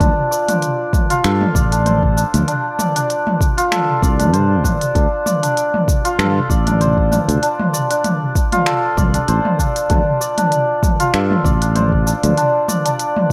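A lightly reverberant, close-up mix opens this short, meditative organic downtempo excerpt at 97 BPM in D minor pentatonic, where a bright, shimmering santur rings out delayed arpeggios over a growly, sustaining fretless electric bass that stops at 12.3 seconds, while an overdriven soft electronic kick and an organic electronic kit of finger snaps, smooth hi-hat, shaker and toms, both re-recorded in a small room, carry a lightly swung 4/4 groove on a Dm7 chord.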